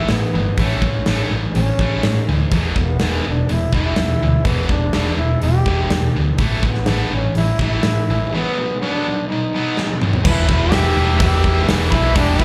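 Heard as a live gig through the venue's PA with a small club reverb, this menacing, driving hard rock excerpt at 124 BPM puts a punchy, close-miked solo trombone on the melody, its vibrato touched by slapback echo, over two picked distorted guitar riffs: a high-gain one with slapback echo and a tight one in the background. A dark, round hollow-body fingered bass carries the bass line beneath a huge arena drum kit that sits up front with a boomy kick, medium-tuned snare and bright cymbals, pumping with hall ambience. After a drum fill at 9.8 s, a very quiet double-tracked overdriven guitar joins at 10.2 s and a fuzz-laden octave lead guitar slips in behind at 10.3 s with analog delay and slapback echo.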